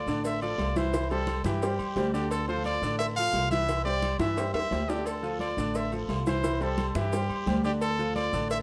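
Set in a moderate studio reverb, this passionate, danceable salsa excerpt at 174 BPM in D minor puts a clear, punchy trumpet with light vibrato and plate reverb up front. Beneath it are a bright baby grand piano with audible action noise and a woody, thumpy pizzicato upright bass, backed by hard-hand congas, ringing agogo bells and timbales, raspy guiro, grainy maracas and very quiet, tight cowbell and bongos, with a drum fill at 4.2 seconds as the harmony moves between Dmadd9 and C before settling on Dm.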